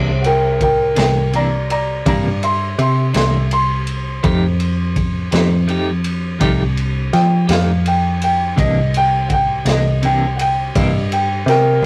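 A rough rehearsal-room sound with a moderate booth ambience frames this short slice of a slow blues in C mixolydian, moving at 55 BPM in 12/8 with a straight, soulful and rollicking feel. The upright piano carries the solo in its upper register, its woody tone and long sustain sitting over a C9 to F9 and back to C9 progression. Beneath it, a clean, bright and twangy picked electric guitar supplies accompaniment with a tremolo effect. The picked electric bass is dark, round and foam-muted, sitting up front in the mix. A lo-fi vintage kit with a punchy kick, medium-tuned snare and ride cymbal adds a muffled, rolled-off top from a small room, coming in at 0.2 seconds alongside the piano.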